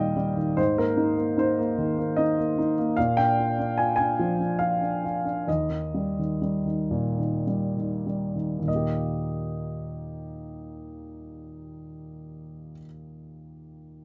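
Warm and calm, this short classical excerpt features a lone grand piano playing lyrically in triple metre with free, rubato timing that slows between 3.0 and 8.7 seconds before a new passage begins. The instrument sounds dark and mellow, with long sustain, and sits up front in a close, detailed recording touched by light reverb. Its harmony moves between home, subdominant and dominant chords in Eb major, settling at 8.7 seconds onto a softly coloured home chord.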